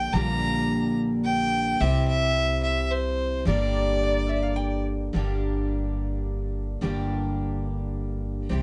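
Intimate and reflective, this short excerpt cut from a longer acoustic folk piece moves at 108 BPM in a straight 3/4, centred on G dorian with a dark, warm production and light reverb. A clear, focused fiddle sits up front with the melody, its bowed line carrying light vibrato and a smooth top until it stops at 4.8 seconds. Beneath it, a picked twelve-string acoustic guitar rings with a shimmering, octave-doubled, full-bodied jumbo tone, finger squeaks audible, while a pizzicato upright bass on gut strings adds a woody, thumpy foundation. Briefly, from 4.0 to 5.1 seconds, a lap resonator guitar played with fingerpicks and slide slips in a metallic, nasal second line. The chords pass from Gm/Bb to C and back to Gm, and after the first section gives way at 5.1 seconds, guitar and bass carry the second section on their own.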